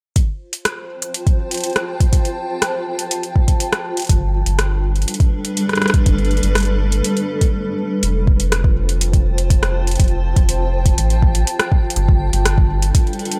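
An overdriven electronic kick sits up front in this glitchy, playful IDM excerpt, a soft thump given grit and the feel of a small room, starting at 0.2 seconds and driving a straight 4/4 pulse at 122 BPM in F lydian. Beside it, an analog drum machine adds tape-warm, metallic hi-hats and rim clicks, also close and present. A cloudy granular pad of detuned triangle voices holds sustained chords that blur and evolve behind a slow attack, its built-in reverb and sidechain pumping tying its breathing to the beat. At 4.1 seconds a rubbery, hollow square-wave bass arrives low and dark, with a bouncy filter pluck and a moving notch, as the harmony shifts from F to Gadd9. A short break at 7.5 seconds leads into the second section, which returns to F before turning again to Gadd9. The dry, gritty hardware sound keeps the whole piece tight and immediate.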